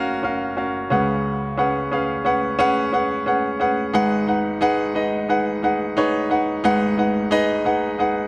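Pop in a moody, urgent vein, this brief passage from a longer piece features a solo baby grand piano playing from 0.0 to 8.3 s, with a clear, polished tone sitting up front over a lightly swung sixteenth-note feel. The harmony moves from F#maj7 to C#7sus4, then settles on G#m7 as a new section begins at 3.9 s. A moderate plate reverb with a 3.3 s decay surrounds the piano's present sound.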